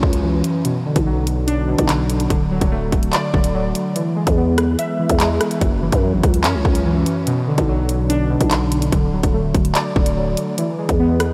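A dreamy, reverb-soaked mix frames this cold, ominous half-time drill excerpt at 145 BPM, where warbling, detuned lo-fi synth keys with chorus sit up front over a growling, buzzy 808-style bass and an electronic drill kit of hard-clipped kick, bright hi-hats, handclaps and rim clicks, cycling through F#5, Bm, D and E for 11.3 seconds.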